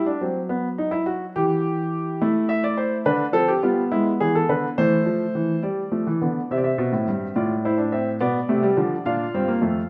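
Serious and contemplative, this short cut from a longer baroque-style four-part fugue in 6/8 features a solo baby grand piano, warm and open with long sustain and placed up front, ranging from F2 to F5 inside a moderate recital-hall reverb, with a second section beginning at 5.6 seconds.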